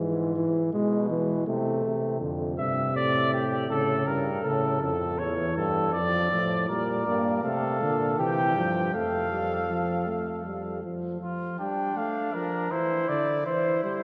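Driving and serious, this excerpt of an imitative classical canzona for brass ensemble moves at 80 BPM in 3/4 from D minor to F major, with a dark, lightly vibrato trombone accompanying throughout, a clear, distant bass trombone anchoring the low end until 10.8 s, a vintage-toned flugelhorn entering on the second line at 2.6 s, and a mellow, smooth-topped trumpet taking the melody from 6.7 s, the ensemble heard from further back in a lingering church reverb.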